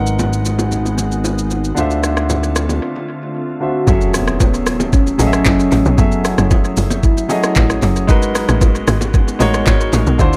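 A knocking, up-front electronic drum kit of handclaps, hi-hat, rim click, shaker and kick, with metallic hats and tape echo, drives this soulful, late-night amapiano excerpt at 114 BPM in 4/4, while a warm grand piano with tape echo plays accompaniment over a glassy, ethereal FM pad and very quiet, vintage bongos and congas. A fat, saturated analog sawtooth bass carries the low end until 2.8 s, and after a short break the drop at 3.9 s brings in a tight, punchy log drum bass alongside a background impact. A velvety, vibrato-tinged synth lead with chorus and tape echo sings the melody from 3.6 to 7.8 s as the chords move from G#m7 and Dm7 to F#m7, all set in an echo-heavy digital ambience.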